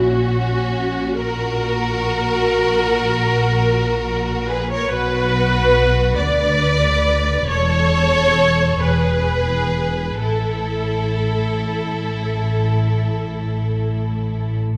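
Strings open together at once in this tender fragment of a slow romantic movement for string orchestra, unfolding in 12/8 with a freely breathing rubato. A smooth, lush symphonic violin section carries the melody, while a focused chamber violin section traces a second line from further back in the blend. The viola section sits up front, its rich, vibrato-laden accompaniment the most present voice in the texture. Cellos and double basses share the bass with an even, bowed depth, the harmony moving from F#/A# through Bm and A/E to a bare A5. The upper strings release at 14.6 seconds, leaving the low strings to sustain briefly until 14.8 seconds, all set in a moderate concert hall reverb that lends a gentle glow.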